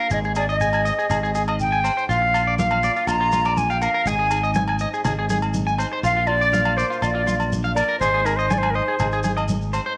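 Warm and sunny, this highlife guitar band clip sets an airy, crisp wooden flute melody up front over twangy, slightly broken-up electric guitar arpeggios with slapback echo, a punchy fingered electric bass rocking between Ab and Bb, fingerpicked flamenco guitar with finger squeak in the background, and grainy shekere and ringing agogo bells, joined by damped, thin-skinned congas from 2.1 seconds, all in a light studio reverb.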